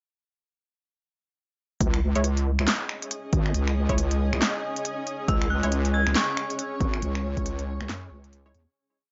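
Meditative and cavernous, this short, complete deep dubstep piece in C# minor moves at 138 BPM with a swung half-time feel, dropping at 1.8 s into a punchy layered electronic kick and an up-front deep house kit of finger snaps, handclaps, smooth closed hi-hat and snare beneath a heavy, wobbling, saturated bass line with chorus, while muted, filtered dub chord stabs echo sparsely in the background, a cloudy, evolving granular pad drifts in with its own reverb, an eerie, inharmonic detuned FM bell traces a free melody with tremolo and dub echo from 5.3 s, and the dry, gritty hardware sound fades out from 6.4 s.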